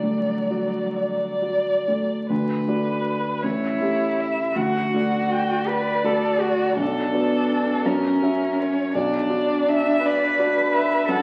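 A distant-sounding violin carries the tender melody with vibrato and portamento over a dark, expressive cello line and mellow, long-sustaining baby grand piano in this serene, rubato classical piano-trio movement in 6/8, heard through the crackle of a very old 78 rpm record and the reverb of a recital hall.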